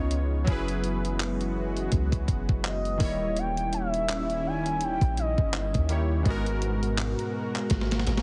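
Sensual and longing, this short cut from a contemporary R&B piece moves with a swung sixteenth-note feel, its chords shifting from F#9sus4 to D#7b9 and settling on G#m9 at 6.3 seconds. A smooth, gliding lead with a detuned, wave-folded edge carries the melody with soft attack, vibrato and portamento, treated with chorus and tape echo, before falling away at 5.9 seconds. Beneath it, round, detuned analog keys with a filter sweep provide accompaniment, while a lush, thick unison pad holds sustained chords with a slow attack and long release, breathing with sidechain pumping. A deep, soft 808-style bass sits up front with a dark, round sine tone, and a clean 12-bit digital drum machine enters at 0.1 seconds with handclaps, hi-hat, a thumpy kick and a medium-tuned snare carrying vintage sampler grit and a small-room character. A drum fill closes the passage at 7.7 seconds, all set in light reverb under a heavily compressed, radio-style sheen.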